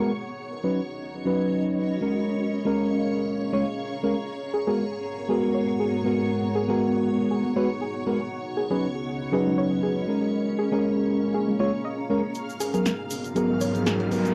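Swung sixteenths at 119 BPM in 4/4 set the pulse for this deep, warm house passage in G# dorian, cut from a longer piece and moving through C#9sus4, A#m7 and G#m9 chords. Up front, a mellow FM electric piano plays soft, round stabs through chorus, a low-pass filter and analog delay, resting on a moody, detuned analog pad of sustained chords with a sub octave beneath. A cloudy, blurred granular pad and a shimmering string machine of violins add texture above, while a gentle, round pluck carries arpeggios from 4.5 to 13.9 seconds through chorus and tape echo. A grainy, close egg shaker slips in at 12.3 seconds, and at 12.4 seconds a build-up begins as a house drum kit brings a punchy snare and warm hats, with an electronic riser entering at 13.0 seconds. The whole carries the character of a home cassette recording in a moderate studio reverb.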